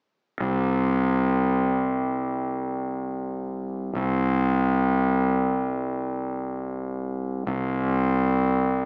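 A growly, fuzz-laden fingered electric bass plays alone from 0.4 to 8.9 seconds in this cinematic, euphoric post-rock fragment in free time, cut from a longer piece. Overdrive and digital delay push its punchy, up-front tone around the low C2 register. A wet recital-hall reverb surrounds it, heard through a small-speaker sound.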